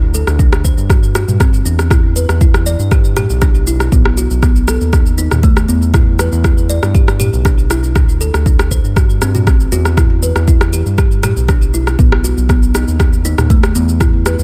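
A round, detuned analog bass with sidechain pumping opens a straight 119 BPM afro house groove in 4/4 and holds the low end, joined from 0.1 seconds by a tape-warm afro-pop kit of cabasa, rim click and toms, before a deep, up-front electronic kick enters at 0.4 seconds to anchor the pulse. Over this a woody, hollow-bodied kalimba plays bright, close-miked arpeggios with a thumbnail pluck, tape echo and the same sidechain pumping. The hypnotic E minor cycle moves through Dsus4, Em, B and D9sus4 in a digital ambience, and this cut from a longer piece runs to 14.4 seconds.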